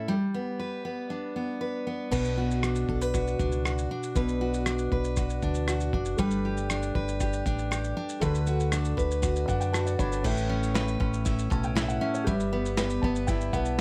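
A full-bodied picked steel-string acoustic guitar opens this sunny, easy-going acoustic pop excerpt alone at 118 BPM in a straight 4/4, moving through chords from G to Bm, Gadd9, D6, Aadd9 and Em/G. At 2.1 seconds a round, dark fingered electric bass and a gritty, overdriven sampler-style drum kit with a thumpy kick, rim click, shaker and crash enter, and a clear, woody upright piano joins at 6.2 seconds, adding fills before the passage cuts off at 13.8 seconds. Light reverb gives the mix a gentle sense of space.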